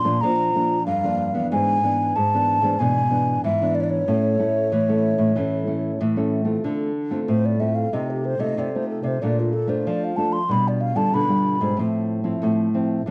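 Yearning and nostalgic, this short cut from a longer samba and choro piece moves at 94 BPM in a straight 4/4, centered on D minor. An airy, hollow wooden flute carries the melody up front, its straight tone, crisp attack and lifted highs colored by cassette tape, and from 6.6 s it takes a solo as the harmony turns through Dm7, Bbmaj7 and G7/B. Beneath it, a small, thumb-plucked nylon-string guitar plays accompaniment with audible finger squeak and the same tape-worn character. A second nylon-string guitar, classical in tone, thumb-plucked and also placed up front, supplies the bass line. The flute drops out at 11.8 s, leaving the two guitars to finish at 13.1 s in a moderate studio reverb that frames this home cassette recording.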